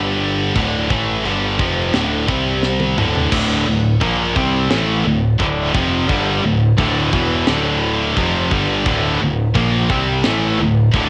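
Relentless and heavy, this heavy metal excerpt in D minor pounds along at 87 BPM in a straight 4/4, with two bright, high-gain guitars up front grinding out distorted riffs through a cassette tape haze, a punchy, overdriven growling bass underneath, a tight metal drum kit with a high-tuned snare and china and crash cymbals sitting in the background from 0.6 seconds, and a drum fill at 2.6 seconds leading to a third double-tracked guitar joining in at 3.3 seconds, all set in a studio reverb on a home cassette recording.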